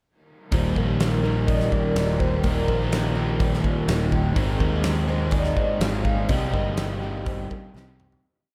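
Blissful and wistful, this short shoegaze and dream pop piece in Eb major moves at a straight 124 BPM over Ebmaj7, Ab and Cm7, with a huge arena drum kit's fat snare and punchy kick up front, a picked electric bass playing a dotted figure, two overdriven semi-hollow guitars ringing out riffs (one treated with analog chorus, the darker one with reverse reverb), and a shimmering, octave-doubled twelve-string acoustic guitar sitting in the background with boxy, woody arpeggios under chorus and diffuse delay, while a velvety, detuned synth lead with vibrato traces motif-based phrases from 1.2 s, all soaked in a long, dreamy ambient reverb that fades out from 6.3 s before a drum fill at 7.8 s.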